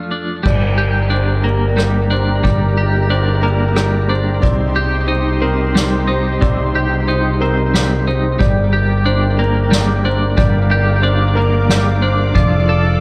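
A brooding, cinematic post-rock passage in G minor at 91 BPM in 3/4, cut from a longer piece. It opens with a brassy, detuned analog pad holding sustained chords through chorus, beside a bright, twangy twelve-string electric guitar picking arpeggios with tremolo and digital delay. At 0.5 s a muted, felt-softened upright piano with audible action noise adds its own delayed arpeggios, while an up-front picked electric bass and a distant, roomy soft-mallet drum kit with dark cymbals enter over Gm, Cm and Dm/F chords in a small room with light reverb.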